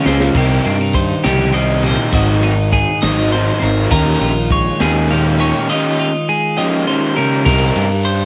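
A lightly reverberant home cassette recording opens this wistful, intricate snippet of math rock and midwest emo in 6/8, where a crisp fusion drum kit with a high-tuned snare, punchy kick and dark cymbals kicks off with a short fill as a bright, twangy twelve-string electric guitar plays accompaniment beneath scooped, compressed clean guitar arpeggios and a double-tracked, crunchy overdriven riff, all three guitars carrying a cassette-tape tint, while an up-front fuzz bass adds a round, dark low end over chords moving from Cm7 through Ab7 and Eb9sus4 before returning to Cm7 at 7.5 seconds.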